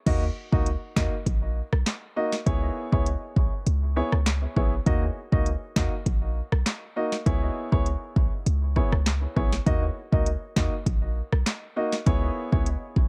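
A deep, boomy 808-style bass with a fast attack and a noise layer anchors this bouncy, tough dancehall excerpt at 100 BPM in Eb phrygian, moving between Ebm and Dbm7. An up-front afro-pop drum kit, with a deep kick, sharp snare, metallic hats, rim clicks, handclaps and crash, carries a gritty vintage-sampler edge, while a polished grand piano plays accompaniment through an analog delay. The mix is dry and echo-heavy, and the piano drops out at 12.7 seconds, just before the bass and drums finish at 13.1 seconds.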